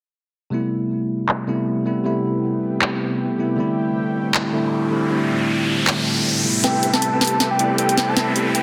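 A drenched, glossy hall sound and a dense, heavily limited master frame this bittersweet, emotional future bass fragment, cut from a longer piece, at 157 BPM in A minor with a swung, half-time feel. A clean, bell-like tine electric piano opens the track up front at 0.5 seconds, its notes echoed in dub fashion over harmony moving from Am9 to Fmaj13/A and back. A sharp-snared trap kit with bright hats and handclaps arrives at 1.3 seconds, filtered and swept, and at 2.2 seconds a shimmering, ethereal pad with a warbling, granular, octave-up glow drifts in behind it, also under a filter sweep. An electronic riser starts building at 4.2 seconds, and at 6.6 seconds a new section begins with a build-up, a drum fill, huge detuned supersaw chords under a filter sweep, and a round, dark octave-layered synth lead carrying the melody high with chorus, delay and vibrato.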